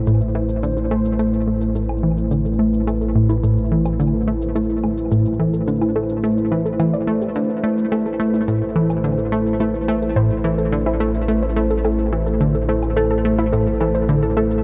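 A straight 4/4 pulse at 107 BPM carries this cosmic, expansive stretch of sequencer-driven ambient space music in A minor, built on an Amadd9 chord and cut from a longer piece. A punchy, funky analog bass riff sits up front with tape echo and a cassette-tape grit, over a vintage, warbling drone on A1 and a bright, resonant pad holding sustained chords with a filter swell and chorus. In the background, a dusty, detuned pluck plays mellow lo-fi arpeggios under a filter sweep and tape echo, while faint electronic cabasa and woodblock tick along, all set in a dark production with a huge ambient reverb.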